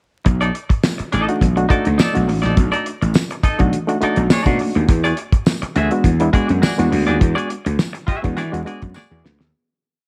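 Vinyl crackle and light small-room ambience frame this energetic funk piece, where a dry, dark 70s drum kit with a fat snare and tight kick drives a sixteenth-note groove beneath a growly, overdriven slap bass riff full of ghost notes and chromatic approach notes, while a clean, compressed semi-hollow guitar scratches out sixteenth-note rhythm through tremolo, a reedy electric piano jabs rootless chord stabs and short fills from 1.3 seconds, very quiet high-tuned congas and a jingly backbeat tambourine add lift, and the track fades out from 7.2 seconds, with a closing drum fill arriving at 8.9 seconds as the fade completes.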